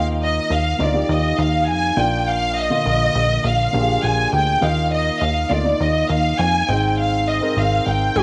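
Set in a moderate echo-chamber reverb, this short, hopeful slice of piano-driven pop opens with a lush, up-front studio violin section carrying the melody with vibrato and portamento, over a dark, mellow baby grand with long sustain and a punchy, funky analog bass whose plucky filter gives each note a fast attack and decay. The harmony moves from Ebsus2 to Bb, back to Ebsus2 and on to Ab in a straight 4/4 feel, and at 8.2 s layered, up-front electronic toms arrive just as the strings, piano and bass stop.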